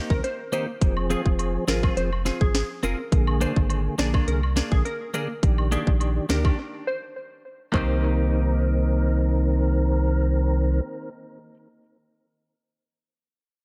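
A tight, overdriven island pop drum kit sits up front with a tight kick, sharp snare, metallic hi-hats and handclaps roughened by vintage 12-bit sampler grit, anchoring this tough, hypnotic dancehall excerpt alongside a round, deep sine sub bass. A tonewheel organ with key click, slow rotary speaker and sidechain pumping carries the accompaniment, while a crystalline, warbling wavetable pluck plays the melody and a twangy clean electric guitar picks arpeggios, with faint cabasa and woodblock adding texture. The mix is dry but echo-heavy, moving through Cm7, Fm, Bb7 and Ebmaj7/Bb, with the drums dropping out at 7.9 s and the guitar continuing until 11.6 s.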